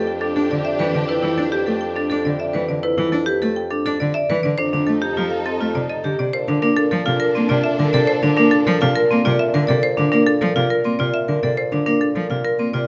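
Woody marimba struck with hard mallets carries the melody in this propulsive, bright minimalist classical piece in 3/4, over ringing, up-front vibraphone arpeggios, a focused, bowed single cello with vibrato, a mellow bassoon bass line and lush, sustained studio strings that drop out at 9.6 s, while the harmony settles onto Bbmaj9 at 6.3 s, all captured with close, detailed microphones and light reverb.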